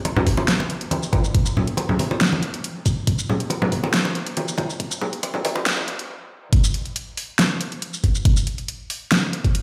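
Heavy and brooding, this half-time dubstep fragment at 139 BPM builds under a filter sweep, with overdriven layered electronic drums (a knocking kick, a huge snare, hi-hat and shaker) up front beside bright, thin-skinned, damped congas carrying a dub echo. The congas fall away at 5.9 seconds, and a brief stop precedes the drop at 6.5 seconds, where the kick and kit press on. The whole sounds as if played on a big sound system in a bare room, set in a moderate echo-chamber reverb and a large studio reverb.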